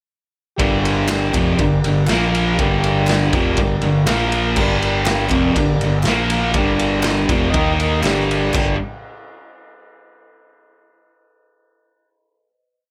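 Garage rock with a raw, menacing edge, played by a small combo at 121 BPM in a straight 4/4 in G minor. Over a pre-chorus that shuttles between G minor and B-flat, with a turn through E-flat, the up-front, double-tracked fuzz guitar drives a bright power-chord riff. A round, tube-saturated electric bass doubles that riff in driving eighth notes. A reedy, overdriven combo organ pushes triad chords in eighths, bathed in spring reverb. The drum kit stomps out a gritty garage groove with a boomy kick, dark cymbals and a rolled-off top in a small, pumping room, while crisp, very quiet handclaps slip in at 1.1 s. The band lands on a final G chord at 8.5 s, and everything has dropped away by 8.8 s.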